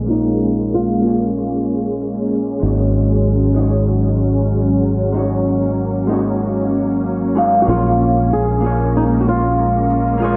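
A fingerpicked flamenco guitar with fresh strings carries the melody up front through an analog delay, playing only from 0.0 to 2.3 seconds and again from 7.6 seconds, in this relaxed, wistful sunset chillout excerpt in Bb minor at 95 BPM with a light 16th-note swing. Beneath it a dark, clean hollow-body jazz guitar picks accompaniment through diffuse ambient delay, a silky, warbling string machine holds slow-attack chords with ensemble chorus, and a fretless electric bass sits direct and up front, while a very quiet overdriven electronic shaker and a barely audible downlifter in the first 2.6 seconds add texture. The dreamy mix is soaked in plate reverb and a low-pass filter sweep, moving from Bbm7 to Ab7sus4 and back.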